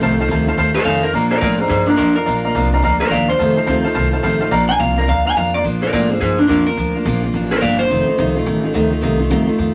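A twangy, slightly broken-up electric guitar through a small old amp carries the melody up front, entering at 0.7 s and playing until 8.3 s in this rowdy, retro rockabilly cut taken from a longer piece. It rides a fast swing at 213 BPM in Bb major, with the harmony moving between F7 and Bb. A full-bodied, picked steel-string dreadnought acoustic guitar sits up front in the accompaniment throughout, while a pizzicato upright bass with gut strings gives a dark, thumpy, woody low end. A clear, natural upright piano adds high accompaniment until 5.6 s, then drops out for the second pass through the same section. The sound has a modest small-room reverb and a layer of vinyl crackle that heightens the vintage feel.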